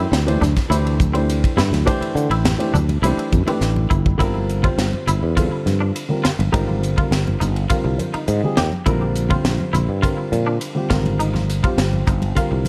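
Electric jazz fusion with a funky, intense mood, cut from a longer piece. A growly, up-front sustaining fretless bass anchors a dark baby grand piano whose mellow, short-sustained chords carry audible action noise, while a crisp, polished drum kit with a high-tuned snare and tight kick plays alongside very quiet, close congas struck with soft hands. A clean, picked semi-hollow guitar adds hollow-body stabs colored by ensemble chorus and tape echo; a drum fill at 3.6 seconds leads into a new section on Gm9, and the piano takes a fill at 7.7 seconds, all in a small room with light reverb and a warm production.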